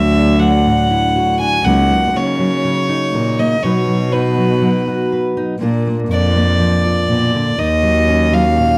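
In a straight 4/4 at 61 BPM, this heartfelt, nostalgic folk fragment in F# major sets a rich, floating violin melody, bowed sul tasto with a soft attack and touched by slapback echo, over full-bodied fingerpicked steel-string acoustic guitar and a warm, intimate cello bass with light vibrato and an airy bow, the three playing together across the 8.8 seconds as the chords move from Dadd9 through F#6/C# and B to A# and D#m7, all in a light reverb with a faint mains hum beneath.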